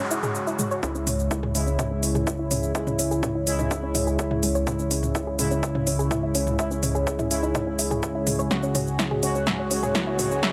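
A hypnotic, driving stretch of melodic techno in C# minor at 125 BPM opens on a noise sweep under a moody, phaser-tinged analog pad, a soft, nasal pluck arpeggio tucked in the background with analog delay, and bold, brassy synth stabs, while a very quiet, mellow drone and a punchy, up-front drum kit of smooth hats, shaker, snare and toms slip in just after. At 0.8 s a dry electronic kick and a round, deep analog bass join, the pad, pluck, brass and bass breathing with sidechain pumping as filter sweeps on the arpeggio and polysynth drive a build-up over a steady C#m. At 8.5 s the harmony shifts to F#sus2/C# and a drum fill arrives, with a riser closing this gritty, hardware-recorded passage cut from a longer piece.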